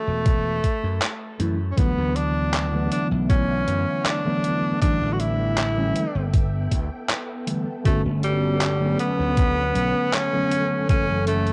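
A clear tenor saxophone leads up front from the opening moment, its pop-style line carrying a light vibrato and trailing tape echo through a cassette haze. This dreamy, woozy vaporwave fragment, cut from a longer piece, moves in an unhurried straight four, with a bright, punchy slap bass arriving almost at once and a thumpy electronic kick plus a detuned 8-bit drum machine of handclaps and hi-hat joining at 0.3 seconds, the drums carrying a tape-softened, sampler-style character. A mellow tine electric piano enters at 1.4 seconds, sounding as if played through built-in speakers, dressed in ensemble chorus, 12-bit sampler grit and tape echo. Just after, a soft string machine settles far in the background with silky, dark sustained chords that bloom slowly and fade long. The harmony drifts from F#m7 through D69, A9sus4 and Gmaj9#11 before returning to F#m7, all within a lightly reverberant home-cassette sound.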